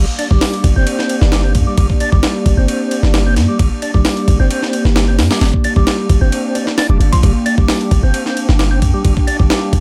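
Lightly reverberant and gritty, this energetic breakbeat fragment at 132 BPM in G minor rides a compressed, pitched-up sampler-style drum kit, up front with a thumpy kick and high-tuned snare, that enters at 0.2 s. Beneath it sit a deep, boomy 808-style bass and a round, percussive tonewheel organ riff coloured by slow rotary speaker, tube saturation, 12-bit sampler grit and delay. Over these, a warbling, nostalgic lo-fi pad of sustained chords pumps under sidechain with chorus and built-in reverb.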